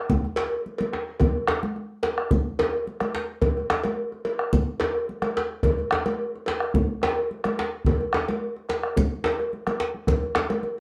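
West African traditional drum ensemble at 108 BPM in a straight 4/4, driving and powerful, with a round bombo, thick-skinned, damped, high-tuned congas and a tight, cracking djembe all sounding up front, joined at 0.4 seconds by a metallic cowbell set in a distant large room, the whole excerpt carrying wet studio reverb and the warbly pitch drift of worn old cassette tape.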